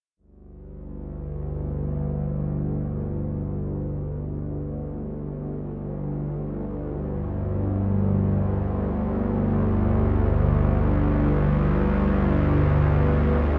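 Floating in free time, this dark, ominous ambient passage, cut from a longer piece, rests on a G5 chord from 0.2 seconds. A single bowed-like drone enters at 0.5 seconds and holds in the low G1 to D2 register until 13.6 seconds: a tense, nasal, sawtooth-edged string tone with a noise layer, slow attack, vibrato and long release, sitting bright and up front with its own built-in reverb. Around it, a wet cathedral space with a 6.2-second decay deepens the brooding stillness.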